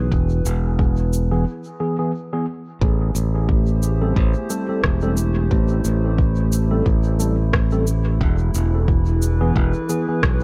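Ambient dub at 89 BPM in A minor, this meditative, deep passage is cut from a longer piece and sits in a digital ambience with an echo-heavy mix. A warbling, detuned pad holds sustained chords with a slow attack and long release, its nostalgic lo-fi haze softened by chorus and built-in reverb. Up front, a bright, growly fingered electric bass plays low from the start, joined at 0.1 seconds by a soft, tape-warm electronic kick. Electronic cabasa and rim click enter at 0.5 seconds, thrown into dub echo, while a mellow tine electric piano adds clean stabs from 1.3 seconds, colored by analog chorus and its own dub echo. A break falls between 1.5 and 2.8 seconds before the harmony settles on Am7, then returns to E near the close, all riding a gently swung sixteenth-note feel.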